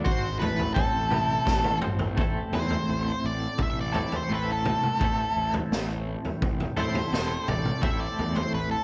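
Psychedelic rock in A minor at 85 BPM, this dark, hypnotic excerpt moves in a straight 4/4 and is cut from a longer piece. A bright, twangy twelve-string electric guitar plays a clean, compressed riff with tremolo and double-tracking, while a fuzz picked electric bass sits in the background, its overdriven tone thickening the low end from 0.1 seconds. The raw garage drum kit is up front, with a punchy kick, a high-tuned snare and toms in a saturated, gritty small-room sound with a rolled-off top. A drum fill from 1.5 to 2.2 seconds leads into the second section, where the octave-fuzz lead guitar, which has carried the melody from the start, takes a solo. That lead is dark, distorted and up front, its picked fuzz tone carried by slapback echo. The mix as a whole is dry, with little reverb, keeping the sound close and immediate.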